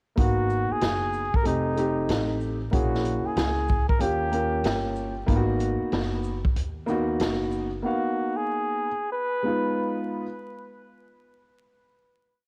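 A cool, nocturnal jazz-hop piece in G# dorian at 94 BPM opens at 0.2 s with a breathy flugelhorn carrying a mellow, motif-based melody of scooped notes and light vibrato through analog delay, over a dark, boxy baby grand piano pushing rootless chords with grace notes and audible action noise, colored by cassette tape. A woody pizzicato upright bass walks with muted ghost notes, while a vintage drum kit keeps a sparse, swung beat of quarter-note hi-hats, shaker, a medium-tuned snare and a punchy kick. The drums drop out at 7.7 s and the bass just after, leaving piano and flugelhorn to finish on the returning G#m7 of the G#m7, F7, A#m7b5, D#7 progression in a small room with light reverb and the crackle of a home cassette recording.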